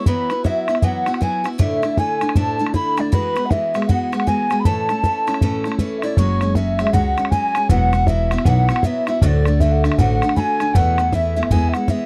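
A dry, close recording with a 1970s studio character frames this bright, lively Celtic hornpipe, cut from a longer piece and moving at 157 BPM in 4/4 with a swung eighth-note lilt. A mellow wooden flute carries the melody with a pure tone, soft attack and gentle vibrato, sitting at a slight distance, while a hollow metal whistle traces a second line in the background, airy and tongued with a touch of chiff. Up front, a picked steel-string acoustic guitar gives bright accompaniment with audible finger squeak, and a tight, damped bodhran keeps the pulse close at hand. At 6.2 seconds, as the tune repeats, a pizzicato upright bass joins with a woody, steel-strung tone. The harmony circles through suspended and open chords such as Esus2, Dsus2 and F#sus2, settling onto E near the end.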